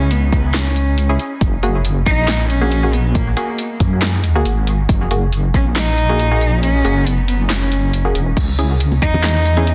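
A deep, detuned sawtooth wobble bass with chorus sits up front in this brooding, cavernous deep dubstep excerpt at 138 BPM in half-time, joined by a dark bowed cello melody with vibrato and dub echo, a muted, filtered chord stab moving from F#add9 to C#m, a punchy overdriven drum kit with metallic hats and handclaps, an overdriven electronic kick that drops out from 6.6 to 8.4 seconds, and bright, damped congas entering in the background at 8.5 seconds, all set in a dry, dense, heavily limited master.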